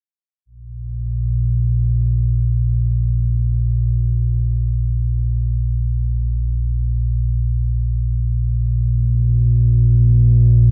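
A deep, rumbling synth drone carries this short ambient excerpt alone, sounding from 0.5 to 10.7 seconds in free time. Its tone blends triangle and sawtooth waves, and it sits low, spanning Bb1 to Bb2, with a slow attack, a long sustain and an extended release. Placed up front, the drone has an ominous, shadowy character, enveloped in its own built-in reverb. A light reverb colors the overall space, and the instrument is tuned to A4 = 443 Hz. The mood is dark and unsettling throughout this fragment of a longer piece.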